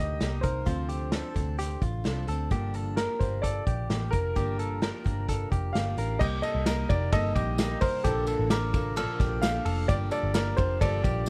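Wistful and bittersweet, this jangly indie pop fragment sets a woody upright piano melody with slapback echo over picked steel-string acoustic guitar and bright, twangy arpeggios from a clean electric guitar touched with subtle chorus and its own slapback. A round, foam-muted electric bass and an up-front vintage drum kit with dark cymbals, a punchy kick and a pumping small-room sound underpin the song, while a jingly tambourine joins in the background at 6.2 seconds. A sparkling, bell-like glockenspiel struck with brass mallets rings briefly at 8.5 seconds, and the mix stays dry.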